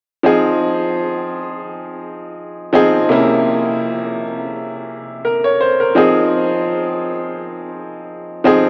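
A dreamy mix drenched in the long tail of a cathedral reverb opens this short cut from a longer hip hop piece, its mood dark and gritty. A single upright piano carries the accompaniment from 0.2 to 8.7 seconds, sitting up front with a woody, vintage character. Its tone passes through cassette tape and is trimmed by high-pass and low-pass filters, which adds grit around the otherwise clear, smooth keys. The harmony moves from Fm7 to C7b9 at 3.1 seconds, then returns to Fm7 as a new section begins at 6.0 seconds. A gentle swing on the sixteenths in common time gives the brooding chords a loose, head-nodding sway.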